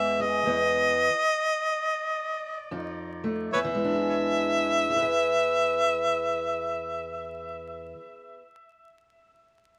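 Swaggering and rollicking, this fragment of acoustic country blues in E major sways in 4/4 with a swung eighth-note feel at 72-85 BPM, easing its pace through the first 3.5 seconds as the chords move from E to F7 and then E7. Up front, a warm, jazz-style harmonica carries the solo melody with vibrato, tongue slaps, scooped notes and a touch of tape echo, while a dark, boxy parlour steel-string guitar fingerpicks the accompaniment and rings on alone after the harmonica stops at 7.6 seconds. Close, detailed microphones, moderate studio reverb and a layer of vinyl crackle give it an intimate, old-record character.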